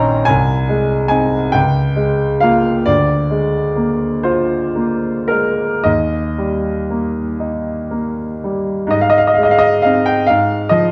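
Dreamy and nostalgic, this short fragment of a romantic nocturne for solo piano drifts in 6/8 at a slow 35-48 BPM counted in dotted quarters, its rubato letting the pulse breathe freely. A clear concert grand carries everything alone across just under 11 seconds, its tone open and up front with a deep bass reaching down to Bb1 and a top reaching C6. In Ab major, the harmony moves from Ab/C through Bbm7/Db and Bb7/D to a resting Eb around 5.9 seconds, before a new section opens on Ab at 8.9 seconds and closes on a rootless Bb7 over Ab. A wet recital hall reverb lends the sound a spacious halo. What sets the recording apart is its worn, warbling cassette quality, with a pitch drift that bends the notes and gives the music the faded feel of an old keepsake.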